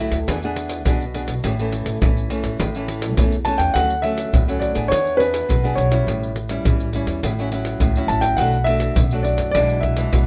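An intimate grand piano carries the melody from 3.4 seconds, its action noise audible beneath a playful line as the harmony moves through Dmaj7, E7, A7 and Bm7. This lively samba and choro excerpt in D major runs at 104 BPM in a straight 4/4, with a small, fingerpicked nylon-string guitar and a woody, growly pizzicato upright bass laying down the accompaniment from the start. Up front, a close, dry tube shaker, pandeiro and tight surdo are struck with hard hands, all held in light reverb.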